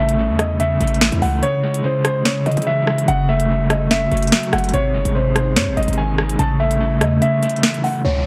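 A dark, warm production with light reverb frames this ominous, cold drill excerpt, cut from a longer piece and moving at 145 BPM in 4/4 with a half-time feel. A dark, mellow concert grand carries the melody with a smooth, vintage tone, short sustain and tape echo, while a slightly broken-up, fingered electric guitar sits up front with tremolo and a low-pass filter. Beneath them, a hollow, flute-like pad holds soft-attack chords in the background with ensemble chorus, and a punchy, heavy 808-style bass with a noise layer and fast attack drives the low end. The electronic drill kit is up front, with a sharp snare, crisp hats, finger snaps and rim clicks, pausing for a brief break at 1.4 seconds and dropping its kick at 7.2 seconds. The harmony moves from A through C#m and F#m to G# and back to A, and at 8.0 seconds the hi-hats cut out as an electronic downlifter closes the passage.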